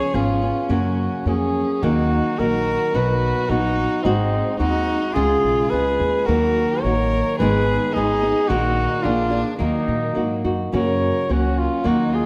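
Romantic and festive, this mariachi-style Mexican folk excerpt moves in a loose, rubato two-beat feel. A mellow, vintage-toned trumpet carries the melody up front in a classical solo style. A single bowed violin plays a clear second line with biting, intense vibrato and an airy bow, its sound trailed by tape echo. A small, fingerpicked nylon-string guitar sits close with warm accompaniment, and an upright bass enters at 0.1 seconds with woody pizzicato on steel strings. The players share a wet recital hall whose reverberation lingers around them, and after a longer middle passage the opening material returns at 10.7 seconds.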